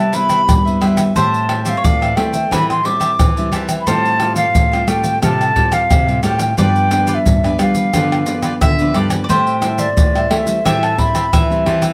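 An airy, hollow wooden flute carries the melody up front, close-miked and tongued with a touch of vibrato, its sound set in plate reverb. This festive, joyful samba and choro passage, cut from a longer piece, moves in a straight 4/4 over a progression from Cmaj7 through Am7, Fadd9/A and G7 before settling back on Am7 at 9.3 seconds. A picked bowl-back mandolin with its double strings plays a second line beneath the flute, while a bright, crisp cavaquinho picks out accompaniment further in the background. Two fingerpicked classical nylon-string guitars fill out the lower register, one adding accompaniment chords and the other, full-bodied, supplying the bass. Maracas, pandeiro, tamborim and a tight surdo sit up front with a small-room sound, entering at 0.1 seconds, and the whole ensemble shares a moderate studio reverb.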